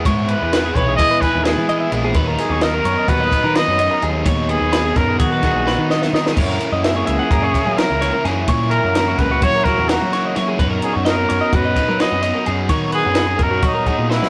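Math rock meets midwest emo in this playful, wistful 9/8 excerpt, moving at 256 BPM counted in eighths with a straight feel. A clean, compressed twelve-string electric guitar spins arpeggios in its upper register while a bright, scooped, double-tracked overdriven guitar carries the riff below it. A punchy fuzz bass drives the low end. A compact cocktail drum kit, dry and acoustic with dark cymbals, a high-tuned snare and a tight kick, enters at 0.1 seconds and plays a fill around 5.7 seconds. Up front, a breathy, intimate trumpet with vibrato and a soft attack sings the melody from 0.3 seconds over a progression that runs from Emaj7 through Bmaj7/D# and F#7 to Bmaj7/F#. The whole take has the rough, saturated character of a rehearsal-room recording with light reverb.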